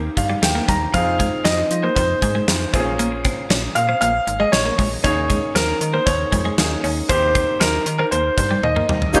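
A wet plate reverb and a bright 1980s-style digital production frame this short, nostalgic and dramatic slice of 1980s-style pop, cut from a longer piece. A brilliant, open baby grand piano opens with a short-sustained fill under the chords, joined by a snappy FM bass with a metallic, fast attack that then decays and a clean, twangy twelve-string electric guitar riff treated with subtle chorus and digital delay. The gated 80s drum kit sits up front with a tight kick, a medium-tuned snare, hi-hat, toms and crash cymbal in an airy, gated-reverb room, and it plays a fill from 8.6 to 9.1 seconds. From 0.9 seconds a second baby grand carries the melody with an intimate, long-sustained tone and audible action noise, moving through Fm7, Bbm7 and Eb7sus4 before returning to Cm7/Eb. In the final moments a grainy, close egg shaker slips in, and at 9.2 seconds a reedy, breathing pedal harmonium lands with sustained chords.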